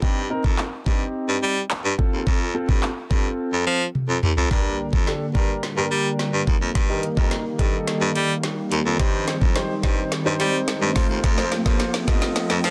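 A straight 4/4 groove from an electronic, produced R&B drum kit drives this bittersweet, confident dance-pop excerpt, with a knocking kick, woody snare, metallic hi-hat, handclaps and toms sitting up front in a small-room sound. An edgy baritone saxophone carries the bass line in a punchy, forceful pop style with vibrato, present and up front, its notes pumping with sidechain compression. A dark, mellow baby grand piano adds intimate accompaniment, natural in tone with audible action noise and a long sustain, and it pumps along as well. After a drum fill at 4.0 seconds, a build-up begins at 4.5 seconds, where a smooth, detuned sawtooth analog pad enters with a slow attack and chorus, holding sustained chords that also pump, and at 5.7 seconds a very quiet electronic riser joins beneath it. Over chords moving through Cm, F, Gm and Eb, light reverb and a dense, heavily limited modern master keep the sound tight and loud.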